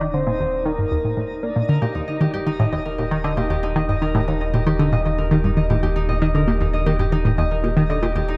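A dark, warm production in moderate plate reverb frames this short slice of ambient, sequencer-driven space music, expansive and cosmic in mood. Up front, a tight, nasal, detuned sequenced synth riff with chorus and delay drives over a round, deep analog bass and a twinkling granular texture with octave-up shimmer, both fading in, while a soft, octave-layered synth lead with vibrato and vintage 12-bit sampler grit sounds only until 1.7 s. From that point, a ringing, fingerpicked Celtic harp plays arpeggios through delay.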